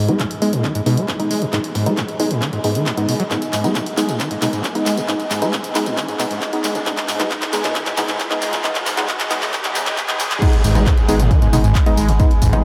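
A squelchy, resonant acid bass riff drives this intense, industrial stretch of peak-time techno at 135 BPM in G# minor, its sawtooth tone roughened by vintage 12-bit sampler grit, pumping against the kick and trailing analog delay while a filter sweep works on it through the build-up. Beside it, a muted, deep dub chord stab on G# minor adds chorused, decaying hits with its own filter sweep and delay, and a dark, warbling tape-like pad hangs in the background with a nostalgic, lo-fi haze. A heavy, layered electronic kick sits back in a large room, while a techno kit of crash, handclaps, hi-hat and tambourine carries a drum fill across the build, joined by a very quiet riser from 2.1 to 10.4 seconds. Shortly after the drop at 10.4 seconds, a thick, saturated sine sub bass arrives at 10.6 seconds on a low G# and rumbles beneath everything until the cut. The whole mix is soaked in an enormous, dreamy reverb with an eight-second tail, giving this fragment of a longer track a cavernous pressure.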